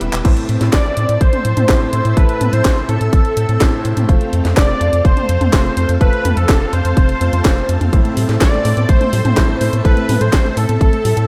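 A drum fill on the house kit opens this bittersweet, danceable italo disco excerpt in A minor at 125 BPM, with its cracking snare, handclaps, hi-hat, toms and crash sitting in gated reverb, before the punchy electronic kick arrives up front at 0.2 seconds over a deep, round analog bass that sounds from the very start. A thick, detuned unison lead carries the melody from 0.7 seconds, bright with vibrato, lush chorus, tape echo and gritty 12-bit sampler character, while a worn baby grand piano plays stabs and a vintage string machine holds sustained chords in the background over Am and F. At 7.9 seconds a soft, mellow pluck adds arpeggios with chorus and delay, all in a dry, close mix.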